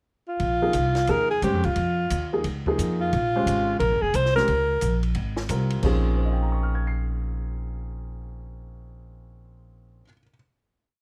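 Intense yet cool, this short, complete modal jazz piece in Bb dorian swings at 177 BPM in 4/4 over a Bbm11 harmony. A warm, up-front alto saxophone with vibrato opens the pickup at 0.3 seconds and states a motif-based melody of hook phrases in a jazz solo style, finishing at 5.0 seconds. Beneath it, an upright bass plays a pizzicato walking line, woody, dark and thumpy on steel strings, while a baby grand piano, intimate with audible action noise, supplies syncopated comping in quartal voicings. A compact cocktail drum kit, acoustic and dry with dark cymbals, a high-tuned snare and a punchy kick, keeps a ride cymbal pattern with sticks until 5.9 seconds. Bass and piano then carry the closing chord, with little or hardly any reverb.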